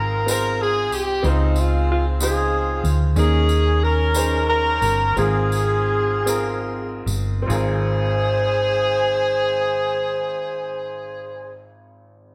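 Set in a steady 6/8 at a slow 46-62 BPM counted in dotted quarters, this uplifting, jubilant gospel fragment in Ab major eases into a slowing of the tempo from 3.2 seconds. A breathy, subtoned alto saxophone carries the melody with jazz-style vibrato, sitting distant and roomy, while a tight horn section shares the melody beneath it with a light vibrato and a present, mellow glow. A bright, woody upright piano supplies brilliant accompaniment across a broad range, and a dark, round hollow-body electric bass sits up front with a punchy, amped tone. A jingly, close and dry tambourine adds sparkle until 7.9 seconds, and after 11.7 seconds the piano rings on alone. The harmony moves from Ab6/9 through Dbmaj9 and Eb7sus4 back to Ab6/9, and the band plays live together in a moderately reverberant stone room.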